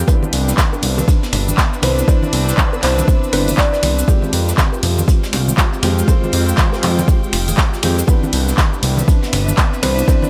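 Deep house at 120 BPM in C major, this soulful, relaxed excerpt rides a swung groove over a slow shift from Cmaj9 to Fmadd9 and back to Cmaj9 at 8.1 seconds. A punchy, up-front electronic kick anchors a layered kit of dark hats, ride, handclaps, finger snaps and cabasa, while a vintage brush kit with a medium-tuned snare and rolled-off top sits in the background and soft-handed bongos and congas add a very quiet acoustic pulse. The smooth, saturated synth bass is up front and pumps against the kick, as do the felt-muted upright piano stabs, which are mellow and intimate with audible action noise and a trailing delay. Underneath, a very quiet, moody pad holds detuned sustained chords, a warbling lo-fi pluck traces dusty arpeggios, and a rich chamber string section with vibrato adds bowed texture in the background. A marimba played with medium mallets steps forward with a short melody between 1.8 and 3.8 seconds, colored by 12-bit sampler grit and tape echo, all within a small room ambience.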